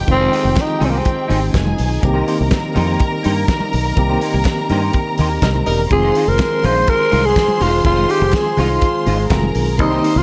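A growling, breathy tenor saxophone leads this driving, sultry disco groove in F minor at 124 BPM, over a punchy up-front fingered bass, a damped 70s drum kit with gated reverb, lush bowed strings, a tine electric piano with fast tremolo, a semi-hollow guitar with ensemble chorus, background French horns, quiet congas and handclaps, with the sax dropping out at 1.6 seconds, a band accent from 4.0 seconds and a brief pop-style horn stab at 5.4 seconds before the sax returns at 5.9 seconds.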